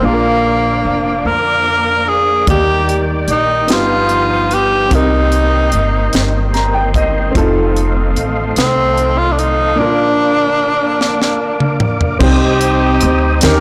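A slow 6/8 pulse at 49 BPM in dotted quarters carries this jubilant, uplifting gospel excerpt, cut from a longer piece. Up front, a raspy, gritty tenor saxophone with bright vibrato sings the melody over a clear, vintage grand piano with short sustain, a woody pizzicato upright bass, and a tonewheel organ holding sustained chords through a slow rotary speaker with chorus vibrato and key click. A lush bowed string section with expressive portamento lies in the background, and a tight funk drum kit, dry and polished with a high-tuned snare and punchy kick, enters at 2.5 s. The piano adds a fill at 6.1 s and the drums another before a warm horn section with light vibrato takes over the melody at 12.2 s, as the harmony moves from Bb through Ebmaj7, G7b13, Cm7 and F7 back to Bb and on to Cm. Moderate recital hall reverb surrounds a blown-out, overdriven recording.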